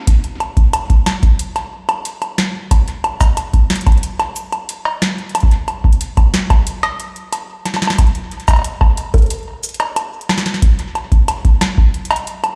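IDM in a playful, glitchy mood, this short cut pairs a deep, up-front electronic kick drum with an analog drum machine whose punchy snare, metallic hats, bongos, cabasa and cowbell carry a touch of delay, all heard as if played over a big sound system in a bare stone room.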